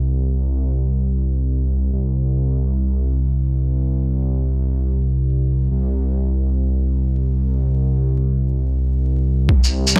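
A dry, gritty recording with vinyl crackle and a low-pass filter frames this nocturnal, melancholic future garage excerpt, which drifts in free time. A dark detuned saw bass carries the first 9.5 seconds alone, deep and rumbling around C2, its unison voices beating against each other, colored by tube saturation and sidechain pumping and placed up front. A filter sweep runs across this opening section as the bass tone sustains. At 9.5 seconds an electronic kick drum lands, muffled, thumpy and pitched down, with overdrive giving it bite. An electronic shaker and snare drum follow at 9.6 seconds, sampler-style and compressed, with a medium-tuned snare that sounds re-recorded in a small room before the clip breaks off at 10.0 seconds.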